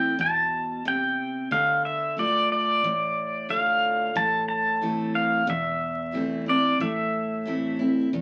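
A twangy, compressed pedal steel guitar sings a heartbroken, lonesome honky-tonk melody up front with fingerpicked slide lines and volume swells, over a full-bodied dreadnought acoustic guitar picked with audible finger squeak and a dark, foam-muted vintage bass rounding out the background from 0.2 seconds, as the chords move from A minor to D minor and back, all bathed in wet studio reverb and the crackle of a very old 78 rpm record in this brief fragment of a longer country piece.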